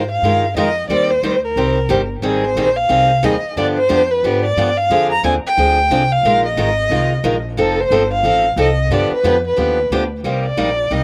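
Acoustic string swing in the jazz manouche style, this short passage taken from a longer piece moves at a brisk 180 BPM in 4/4 with a swung eighth-note feel, and the mood is swinging and fiery. A dark, bowed violin carries the melody up front, its expressive vibrato and portamento gliding over a smooth top end. Underneath, a plucked upright bass with gut strings gives a woody, thumpy foundation, sitting lower in the mix than the other parts. A picked steel-string acoustic guitar joins at 0.2 seconds as accompaniment, boxy in tone and also placed up front. The harmony runs through colorful jazz changes such as Bb7sus4, Abmaj7, G7b9 and Dm7b5 before settling on Cm7 at 10.2 seconds. The sound is dry, recorded outdoors with little reverb.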